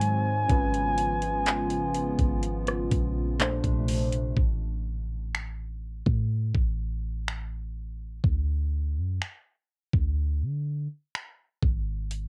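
A gliding, detuned sine lead with vibrato and portamento floats up front over a mellow FM electric piano with chorus and tremolo and a hollow, flute-like pad, all three carrying a cassette-tape haze, in this dreamy, tender contemporary R&B excerpt at 62 BPM. The lead drops out at 3.4 seconds and the keys and pad at 4.4 seconds, leaving a deep, boomy 808-style bass and an electronic kit of knocking kick drum, finger snaps, handclaps, metallic hi-hat and rim clicks to carry on alone. The home cassette recording sounds dry and close.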